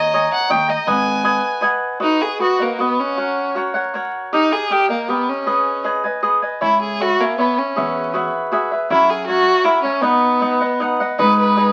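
Mexican folk in a mariachi vein, this proud, romantic excerpt in B major moves at 158 BPM in a rubato 3/4, with an intense, biting solo violin carrying the vibrato-rich melody up front over crisp picked cavaquinho accompaniment, while a woody pizzicato upright bass drops out at 1.4 seconds and returns at 6.6 seconds, all heard through moderate studio reverb and the crackle of a very old 78 rpm record.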